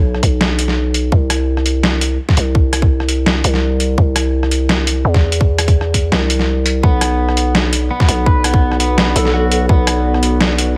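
A spacious, tense digital ambience surrounds this short cut from a longer half-time drum and bass piece at 168 BPM in 4/4. A growling, buzzy 808-style bass sits up front from the start, alongside a hard-clipped electronic kick and a gritty, pitched-down sampler-style kit of hi-hat, rim click and medium-tuned snare, both drum parts tape-warm and treated with studio reverb. The harmony moves from C to Bm, and at 6.8 seconds a twangy, slightly broken-up electric guitar enters with fingered arpeggios trailed by dub echo. A deep, moody analog pad with sub octave and wave-folded tones enters in the background at 7.7 seconds, its detuned chords carrying chorus, 12-bit sampler grit and sidechain pumping. Briefly at 9.2 seconds, a round, keys-like FM lead adds a single bright, warbling note with vibrato, cassette tape colour and dub echo.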